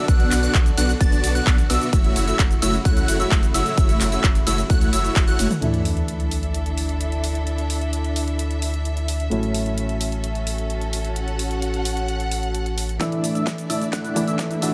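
A straight 4/4 pulse drives this euphoric, uplifting festival progressive house clip, where a punchy, overdriven electronic kick and a big-room kit with a huge snare, cabasa, handclaps, hi-hat, ride and toms thump beneath a thick, detuned supersaw riff, a catchy, plucky unison lead arpeggio with phaser and delay, lush bowed strings and a saturated sub bass, until the kick and both synths fall away around 5.5 seconds for a dark, mellow grand piano and a very quiet sub drop, then return at 13.0 seconds as filter sweeps on the synths lift a build-up.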